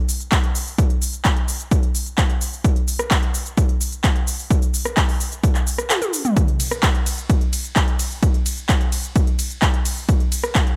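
A straight 4/4 pulse at 129 BPM drives this anthemic, powerful EDM passage, cut from a longer piece and built entirely from drums. A punchy, overdriven electronic kick sits up front, while a layered big-room dance kit adds handclaps, crisp hats, ride cymbal, rim clicks, shaker and toms, its own grit pushed hard. Around 5.9 seconds the kick drops out for a brief drum fill before returning at 6.4 seconds, all in a dry mix.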